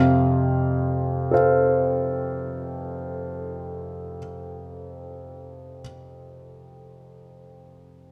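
An upright piano opens on an F major chord, setting a tender, nostalgic tone for this brief romantic nocturne in free time. The solo instrument sounds woody and intimate, sitting up front in the mix with the clatter of its action clearly audible beneath the notes. Its polished tone and long sustain let each sonority hang in the air, spanning from F2 up to F5. A wet recital hall reverb with a 1.6-second decay surrounds the piano, lending the playing a gentle sense of space. Cut from a longer piece, the fragment stays in F major throughout, with its opening section giving way at 6.1 seconds before the piano stops at 8.1 seconds.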